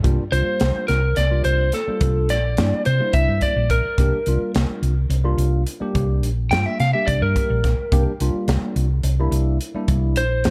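A lightly driven, slightly broken-up lead guitar solos from 0.3 s over a soaring, bright electric jazz fusion groove in 7/8 at 213 BPM in C mixolydian, held on a C9sus4 chord, with a round, dark hollow-body short-scale fingered bass up front, a crisp fusion drum kit with a high-tuned snare and tight kick in a small, pumping room, and a clean tine electric piano with phaser sitting further back, all in a warm studio production with reverb, cut from a longer piece.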